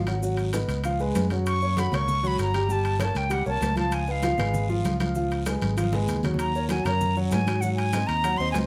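A moderate studio reverb gives this short, sunny Afro-Cuban jazz cut a polished sense of space as it moves at a brisk 195 BPM in a straight 4/4, centered on D-flat mixolydian. Up front, a grand piano with long sustain carries the accompaniment through chords such as Abm7, Db7, Gb and Gdim, while a punchy, amped fingered electric bass anchors the low end. The percussion bed is danceable and textured: thick-skinned, damped congas played with soft hands sit in the background beside ringing metal-shell timbales, a raspy, close guiro and grainy, mellow maracas. At 1.5 seconds an airy silver concert flute enters with the melody, its soft attack and vibrato giving the lead a warm glow. A drum fill between 5.6 and 6.4 seconds pushes the groove toward the closing Ebm7 and Ab9 changes before the piece is cut off.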